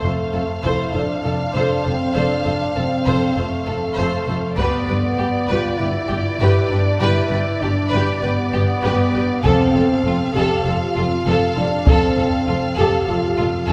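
Majestic and adventurous, this cinematic orchestral fragment sets a dark, lush violin melody over a warm second violin line, viola accompaniment with portamento, and mellow sustained French horn chords, while distant chamber cellos and smooth double basses anchor the bass, heavy-stick taiko hits punctuate at 0.6 and 4.6 seconds before returning from 9.4 seconds, and a church reverb casts a long, resonant glow over the whole.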